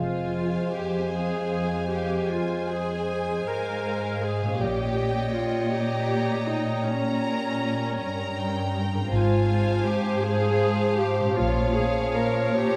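This classical excerpt in F minor moves at a yearning, solemn 53 beats per minute in a rubato 12/8, counted in dotted quarters. A distant violin section carries the melody from the background, alongside a clear clarinet and a lush second violin section on second lines. A smooth, even viola section and a warm bassoon with light vibrato, roomy and set back, fill in the accompaniment. A very quiet concert harp adds ringing fingerpicked arpeggios. Underneath, an intense, up-front cello section and a bowed double bass section anchor the bass, with the double basses stopping at 12.1 s. The harmony moves from Fm through Gdim/Bb and Fm/Ab to Bbm, captured by close, detailed microphones in a moderate recital hall reverb.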